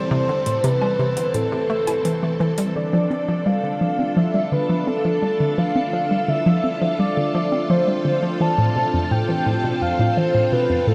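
Hypnotic and cosmic, this ambient, sequencer-driven space music moves at 85 BPM in a straight 4/4, cut from a longer piece and set in a vast, echoing space with a huge, wet reverb that rings for about 8.0 seconds. Up front, a shimmering, retro pulse-width lead carries the melody between A4 and A5, its dark tone moving with vibrato and dressed in chorus, shimmer reverb and delay. Beside it, a hollow, bouncy square pluck plays a detuned, wave-folded riff from F2 to E4, its fast attack and short decay spread by chorus and delay. Beneath both, a string machine holds lush, full-bodied ensemble chords from E3 to A4, softened by ensemble chorus and shimmer reverb, as the harmony passes from Am to Dm at 2.8 seconds and on to F at 8.4 seconds. In the opening seconds, a very quiet, bubbling texture with random resonant filter steps drifts overhead until 2.8 seconds, while overdriven electronic hi-hat and woodblock with metallic hats tick through delay from 0.5 to 2.7 seconds.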